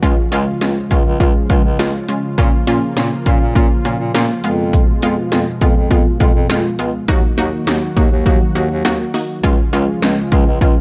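A punchy, up-front, tape-warm kit of 80s electronic drums drives this driving, nocturnal synth-pop excerpt, its gated snare, metallic hi-hats and punchy kick holding a straight 4/4 at 102 BPM in Eb minor. Alongside it, a lush, detuned sawtooth unison pluck with a fast attack, decaying tail, noise layer and filter sweep sits forward in the mix as accompaniment between Ab3 and Gb4. Beneath, a smooth analog pad with chorus holds sustained chords that open slowly and release long. The bass line comes from a bass clarinet, vintage in tone and played in a classical style, ranging from Db2 to Bb2. The harmony moves from Db through Bbm and Fdim to Ebm before returning to Db at 9.4 seconds, all within a dry, close-sounding space, with every part playing throughout the roughly 10.8-second cut.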